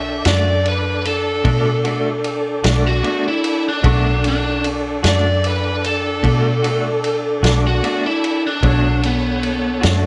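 A biting, overdriven lead guitar solo opens this mournful, soulful slow blues in B minor at 50 BPM in 12/8, over a Bm7 chord laid down by a bright, woody upright piano in the background, a tonewheel organ with slow rotary speaker, chorus vibrato and key click, and a dark, round, foam-muted electric bass up front, joined at 0.2 s by a vintage drum kit with a punchy kick and dark cymbals and at 0.3 s by a slightly broken-up, lo-fi tremolo guitar through a small old amp, all in light reverb.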